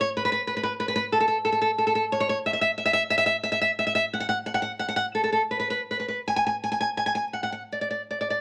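Tender and nostalgic, this brief excerpt from a romantic piece for solo classical guitar moves in 3/4 with a flexible, rubato feel. The nylon-string guitar sits up front, its bright, fingerpicked tone ranging from A4 to G#5 across the full 8.4 seconds. A moderate studio reverb lends a sense of space, while a layer of vinyl crackle adds an old-record patina.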